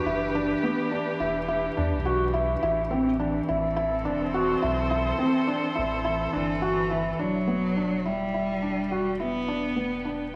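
Melancholic and moving, this short excerpt of piano and strings electronica moves at 105 BPM in 4/4 with a straight feel, set in E minor. A muted string quartet, one player per line and bowed con sordino, holds dark, veiled chords with vibrato and a soft attack, while a felt-muted upright piano plays a mellow, intimate riff up front, its action noise audible and its notes trailing tape echo. Beneath them a round sine sub bass sits deep and sustained. The harmony moves from Em7 to Am and back to Em7, and at 6.3 seconds a clear, focused solo cello enters with a vibrato melody that sounds distant yet present, also carried on tape echo. A lush hall reverb gives the whole a spacious, chamber-like setting.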